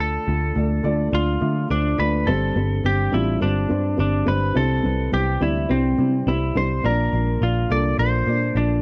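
A straight 4/4 pulse at 105 BPM sets this short cut from a longer piano-driven pop piece, uplifting and anthemic in mood. A felt-muted upright piano carries the accompaniment, its thick felt giving a mellow, boxy, intimate tone. Beneath it, a vintage picked electric bass sits up front with a round, foam-muted, amped sound. A lightly driven lead guitar carries the melody, twangy, compressed and slightly broken-up, as all three parts play together from 0.0 to 8.8 seconds through Dm, Gsus4, C and Bb. The sound is a dry, close 1970s-style studio recording with a small room reverb.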